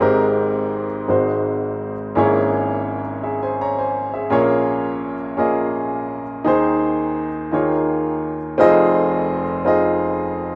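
Wrapped in a wet plate reverb and a rough home-demo mix, this hopeful, uplifting gospel fragment, cut from a longer piece, features a solo baby grand piano sitting up front, intimate and natural with audible action noise and long sustain, moving through rich chords like Abmaj9, Dbm6/Ab and Eb9sus4 in Ab major at a slow 56 BPM in 6/8 before shifting into a new section on Fm7 at 8.6 seconds.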